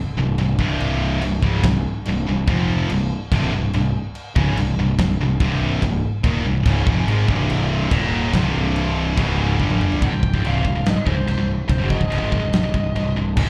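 A half-time 143 BPM heavy metal groove in 4/4 and C phrygian drives this relentless live-club excerpt, where an up-front high-gain guitar and a scooped, background guitar grind out slapback-echoed riffs over a growly fuzz bass and a big, dark drum kit with a fat snare, punchy kick and china crashes, until a drum fill at 9.6 seconds gives way at 10.0 seconds to a dark, bluesy overdriven lead guitar melody.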